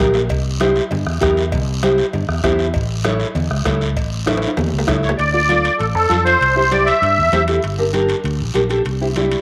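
A fast, straight cumbia groove at 196 BPM in 4/4 drives this fiery, danceable excerpt, built on raspy guiro, ringing congas struck with hard hands, a soft-beaten bombo that stops at 5.0 seconds, and metal-shell cowbell and timbales sitting close and dry in the background, with drum fills at the start and around 4.3 seconds. A dark, round, punchy fingered electric bass sits up front beneath a fingerpicked nylon-string guitar, full-bodied with audible finger squeak, moving through C and A before the second section turns to Dm, C and Gm. At 5.0 seconds a reedy musette accordion, shimmering and vintage in tone, takes the melody up front, and a wet spring reverb colours the whole recording.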